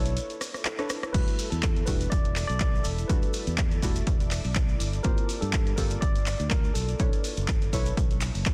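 Deep house at 123 BPM in E minor with a late-night, moody feel, this clip opens on a brief break with a drum fill, with an analog drum machine's handclaps, hi-hat, rim click and crash and a grainy shekere in the background present from the start, before the up-front, punchy electronic kick lands at 1.1 seconds. A growly, bright fingered electric bass pumps under soft, warbling vintage chord stabs with chorus and delay, while a clean electric piano melody with delay floats above an ethereal, detuned pad washed in phaser. The harmony moves through Bm11, Em11 and Gm11 in a dense, heavily limited mix with little reverb.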